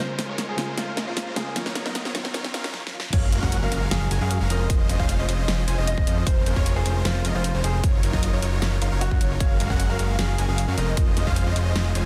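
A half-time future bass groove, lush and euphoric, opens with a worn baby grand piano melody, a soft round pluck and bright detuned supersaw chords pumping under a filter sweep, with a very quiet riser over a dubstep kit of huge snare and bright hats, until the drop at 3.1 seconds brings in a fat, up-front analog bass, a punchy layered kick, an impact and a dreamy lead's arpeggios in the background, set in a dense, heavily limited master with little reverb.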